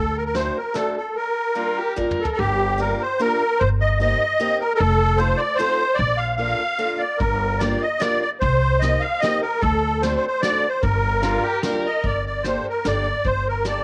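A lilting 3/4 waltz with a gentle swing on the eighth notes sets this whirling, bittersweet musette piece in motion, cut from a longer work. A reedy accordion with a shimmering, wet musette tuning carries the melody up front, while a woody, thumpy upright bass plucks the low line close beside it. A bright, boxy parlour-style steel-string guitar picks the accompaniment, and a soft brush kit with a fat snare and tight kick plays the opening bars, rounds them off with a fill, falls away at 2.4 seconds, and returns at 7.2 seconds. A single distant, rich violin adds brief bowed phrases with vibrato and portamento, first near the start and again at 11.2 seconds, as the harmony cycles through minor seventh, dominant and major seventh chords before settling on a minor added-ninth colour. The accordion, guitar, drums and violin carry a cassette-tape character, and a moderate spring reverb gives the whole a homespun glow.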